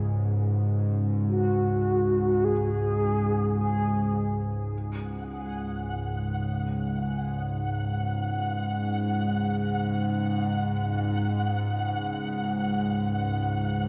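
Dark ambient drone in free time, ominous and vast, tuned to A4 = 437 Hz and cut from a longer piece. A tense, string-like bowed drone sits up front between C#2 and G#2 for the full 13.9 seconds, joined at first by a barely audible deep pad of sustained chords, very quiet clear piano arpeggios on G#4, and a round, horn-like synth lead with chorus and tape echo singing a melody between F#4 and G#4 from 1.3 to 4.4 seconds. After 4.7 seconds the pad and piano stop, and a flickering grainy texture on F#5 enters at 5.1 seconds, all bathed in a cathedral-like reverb.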